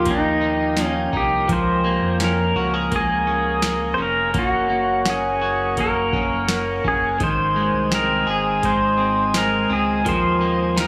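A booming analog drum machine, with a deep kick, crisp snare and metallic hats, sets a straight, unhurried 84 BPM pulse in 4/4 from 0.1 s, under a round, dark analog bass in this floating, dreamy dream pop excerpt in Db major. Above it, a clean, fingerpicked pedal steel guitar with tape echo carries the up-front slide melody, while a slightly broken-up electric guitar drenched in lush chorus and tape echo picks arpeggios and a soft, flute-like tonewheel organ with key click and slow rotary speaker holds sustained chords. A huge ambient reverb with a 6.7 s tail wraps the whole mix as the harmony drifts from Ebadd9 through Db6, Gb and Ab before returning to Ebadd9 at 10.1 s.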